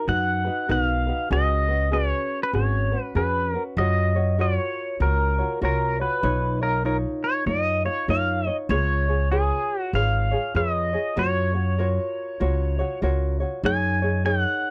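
A twangy, compressed electric pedal steel guitar carries the melody up front with fingerpicked slide lines and volume swells over a light, bright, thumb-plucked ukulele from the start, joined at 0.1 s by a woody, pizzicato upright bass, all in a relaxed, languid Hawaiian groove at 97 BPM with a swung 4/4 feel in F# major, captured dry and close like a 1970s studio session in this 14.7-second cut from a longer piece.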